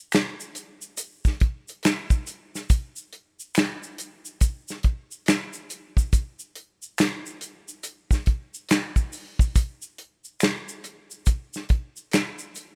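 Smooth and relaxed, this short R&B groove cut from a longer piece sways with a swung sixteenth feel, led by an up-front, dry soul drum kit of tight kick, medium-tuned snare, hi-hat and finger snaps, while a quieter layer of finger snaps, tube shaker and group handclaps sits behind it in a small-room ambience that gives the whole rough home-demo mix an intimate, unpolished character.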